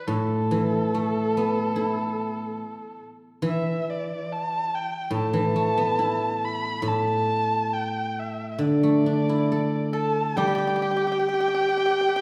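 Festive and pastoral, this brief Chinese chamber passage drifts in free rubato around 71 BPM, with a dark, woody erhu carrying the melody up front with vibrato and portamento over a silvery, ringing guzheng accompaniment, before a hollow, mellow bamboo xiao and a dry, percussive pipa join at 9.9 seconds on a second line, all set in a recital hall's reverb heard from further back in the room.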